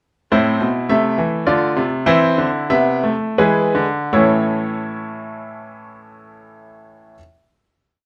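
A classical, baroque-style fugue for solo grand piano in 3/4, contemplative and serious, its four imitative voices woven together in a brief exposition, the tempo slowing from 0.3 to 5.3 seconds. The piano sits up front with a brilliant, polished tone and short sustain, framed by light reverb. At 4.1 seconds the counterpoint settles onto a major final chord, with the piano sounding until 7.2 seconds.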